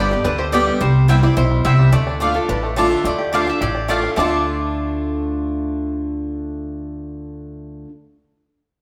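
Straight, driving four-four bluegrass with a lonesome cast, this excerpt from a longer piece sets a twangy, fingerpicked banjo and a woody mandolin on the melody over a bright, up-front picked steel-string guitar with finger squeak, stabs from a second, rounder mandolin and a thumpy gut-string upright bass, while a nasal, boxy fiddle adds a brief second line from 2.2 to 3.0 seconds, the band playing live together in a wet stone room.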